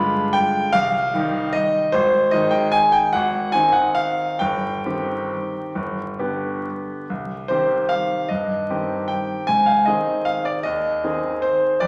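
A classical piano waltz in C minor, elegant and wistful, moving in 3/4 at 130-160 BPM with a flexible rubato feel, cut from a longer piece. A clear grand piano plays alone and up front across a range from G1 to B5, its natural tone carrying a long sustain, set in a wet recital hall reverb with vinyl crackle. The harmony opens on a G7b9 before settling into C minor and A-flat, and a second section begins at 7.1 seconds.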